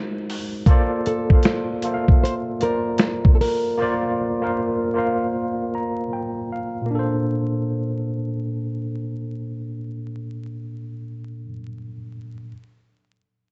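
A swung sixteenth-note lo-fi hip hop groove opens this cosy, dreamy fragment, as a gritty, compressed sampler-style drum kit with a thumpy kick and medium-tuned snare sits up front until 3.6 s, while a worn, slightly out-of-tune, lightly overdriven tine electric piano heard through built-in speakers holds the chords throughout and a small, thumb-plucked nylon-string guitar with fresh strings and finger squeak carries a brief melody from 1.1 s through analog delay, the whole set in a dark production with vinyl crackle and light reverb.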